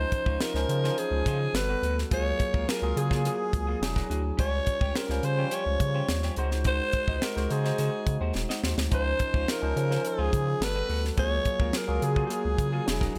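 A growling, breathy alto saxophone carries the melody up front, close-miked and raspy with jazz vibrato, over a barky tine electric piano that is lightly overdriven through a combo amp and bathed in lush chorus. This breezy, urban slice of polished 1980s jazz-funk pop rides a deep, saturated sub bass and a dry, tight funk drum kit with a high-tuned snare that enters at 0.1 seconds, while a twangy, slightly broken-up electric guitar riff sits in the background. A short drum fill at 8.4 seconds leads the harmony back to its opening Dbmaj9 chord at 8.9 seconds, all heard in a small room and cut from a longer piece.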